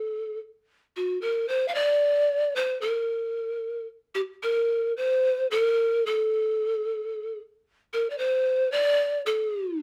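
Melancholic and wistful, this short cut from a longer Andean folk piece moves at an unhurried 74 beats per minute in a straight 6/8, counted in dotted quarters. A lone bamboo pan flute carries everything from 0.0 to 9.8 seconds, ranging from F#4 up to F5 and tuned to A4 = 436 Hz. Its tone is breathy, mellow and hollow, with rolled-off highs, a gentle vibrato and a crisp, chiffy attack. The flute sits up front in a moderate studio reverb that lends a touch of space. The opening section returns at 4.4 seconds and plays through once more.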